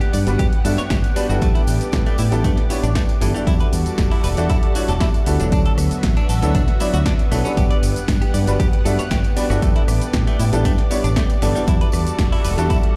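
An up-front, punchy electronic kick and a bright, envelope-filtered fingered bass drive this groovy, feel-good nu-disco cut at 117 BPM, with a house kit of cabasa, hi-hat, rim click and snare, a very quiet tambourine, a clean chorused guitar riff with tape echo, a clear, worn baby grand piano with tape echo, and a thick, detuned unison pad with 12-bit grit, the bass, piano and pad all pumping to the sidechain over Gmaj7, Em11 and D69 chords in a bare stone room.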